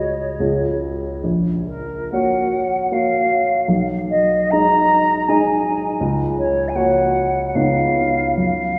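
Romantic classical music for flute and grand piano, serene and lyrical, moves at 75 BPM in a rubato 3/4 with uneven beats in F# major, in a short passage cut from a longer piece. A hollow, pure silver concert flute with vibrato and a crisp attack carries the melody throughout, over a dark grand piano whose short-sustained accompaniment passes through C#, F#/A#, G#m/B and F#/C# before settling on C#9 at 7.6 seconds. A wet church reverb places the duo further back in the room.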